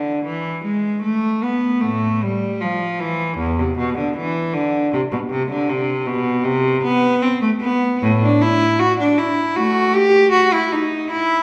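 A lone bowed cello with a rich, reedy gut-string tone and light vibrato carries this solemn, introspective baroque-style suite movement, played in period style with a rubato feel, sitting up front yet heard from further back in a recital hall whose lingering 1.7-second reverb lends the brief passage a wet, spacious glow as the harmony shifts around 8.0 s.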